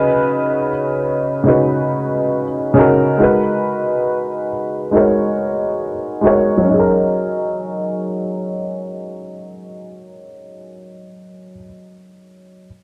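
A worn, slightly detuned upright piano sits up front, its woody tone and audible action noise giving this short fragment of a hip hop piece an intimate, cosy feel. It carries the accompaniment on its own in a mellow, swung 4/4 groove, moving through lush ninth and suspended chords before settling onto a sixth-chord colour once the second section begins at 6.7 seconds. A low-pass filter shades the piano throughout, and a filter sweep runs across it for the first 6.7 seconds. A modest small-room reverb keeps the sound close, and the production leans dark and warm. The piano plays until 12.7 seconds, where the clip is cut from the longer piece.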